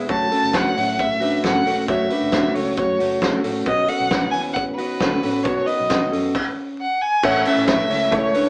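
A single bowed violin leads this breezy, nostalgic slice of jangly indie pop, its smooth, focused tone carrying the melody up front with vibrato from 0.1 seconds. Beneath it, a loose acoustic drum kit sits close, with a fat snare, punchy kick, crash and hi-hat sounding gritty and saturated, their top end rolled off. A picked, compressed clean electric guitar recorded direct plays warm accompaniment, while a second, darker fingered guitar spins arpeggios in the background alongside a round, foam-muted electric bass. The harmony moves from E5 to Badd9, and at 7.2 seconds it settles on A as glossy, warbling retro synth keys enter, chorused and detuned with a filter sweep and decaying notes. The band sounds as if it is playing live in a stone room with moderate reverb, with vinyl crackle and a small-speaker tone adding to the vintage feel of this short cut from a longer piece.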